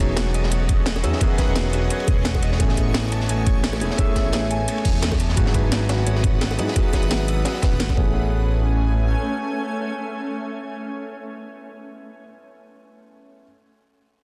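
This short cut from a longer piece has a dense, heavily limited modern sound with light reverb and a small room ambience, setting an uplifting, lush liquid drum and bass groove at 173 BPM in A lydian with a gentle swing on the sixteenths. Up front sit a gritty, thumpy, pitched-up electronic kick and a smooth, nasal synth bass with fast attack and vibrato. These are layered with an electronic kit of cracking snare and metallic hats and a crunchy breakbeat kit with dark cymbals, a high-tuned snare and a rolled-off top, plus very quiet, close and dry bongos that enter at 1.0 seconds. Over the chords moving from Emaj13 through Amaj7 and C#m11/G#, a dark, mellow concert grand piano with delay and a ringing, fingerpicked harp with tape echo both carry filter sweeps, while a shimmering, ethereal ambient pad holds detuned, granular sustained chords with chorus. The drums and kick drop out around 8.0 seconds and the bass follows at about 9.1 seconds, leaving the pad, harp and piano, with the piano ringing on alone until 13.4 seconds.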